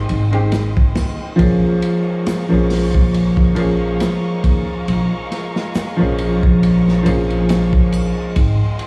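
A slow, swung breakbeat on crunchy acoustic drums sets a melancholic, brooding trip hop mood, with a punchy kick, medium-tuned snare, hi-hat and dark ride cymbal, all saturated and gritty with a rolled-off top. A woody, growly pizzicato upright bass sits up front beside a clear, worn upright piano that is slightly detuned and carries harmonic tremolo and tape echo as it accompanies. Behind them, a muted chamber violin section holds veiled, distant chords con sordino with vibrato, while an egg shaker and triangle stay close and dry in the background. The harmony moves from Abmaj7 to Bbm7 at 1.4 seconds and returns to Abmaj7 at 8.4 seconds. The whole mix sounds as if played through a big sound system in a bare stone room, with reverb and vinyl crackle, and this short fragment is cut from a longer piece.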